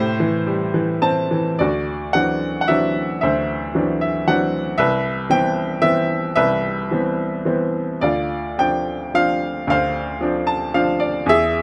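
In a three-beat metre played with free, elastic rubato, this brooding classical piece unfolds on a single baby grand piano. The instrument has a bright, brilliant, worn character with short sustain, and it sits up front in a close, detailed recording touched by light reverb. Spanning from deep bass to the upper treble, the piano carries the entire lyrical line on its own, moving through moody harmonies that shift from Am7 to D9, Cmaj7 and Dm7. After a brief opening phrase, a longer passage begins at 1.6 seconds and runs to the end. Short piano fills ornament the music around 0.7, 3.8 and 10.2 seconds in this fragment of a longer work.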